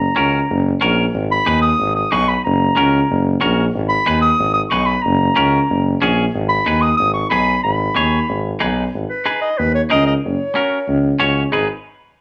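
This fiery, driving cumbia moves at a brisk 185 BPM in straight 4/4, set in G# minor with tuning at A4 = 443 Hz. A clarinet carries the melody up front, its soft attack and classical poise giving the tune a warm voice. Beneath it, a clear, punchy tuba holds the bass with a touch of vibrato and a smooth top. From 0.2 seconds, a semi-hollow electric guitar adds clean, compressed, picked accompaniment with a warm hollow-body tone and a splash of spring reverb. The harmony sways between F# and G# minor, and this short cut from a longer piece shifts into a new section at 8.9 seconds, all heard in a small room with light reverb.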